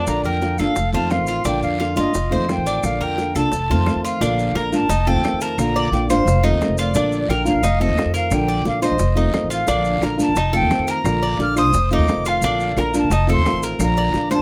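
A thumpy upright bass on gut strings sits up front, its woody pizzicato anchoring a relaxed Cuban son and guajira groove as the harmony rocks between Bb and F7, moving into a new section at 4.2 seconds. A distant, airy silver concert flute carries the tongued melody with vibrato over a dark, thumb-plucked flamenco guitar and the bright, metallic picked arpeggios of a Cuban tres with double strings. Round, low-tuned bongos, grainy maracas and a raspy guiro sit in the background, with very quiet, close and dry claves, all under light reverb.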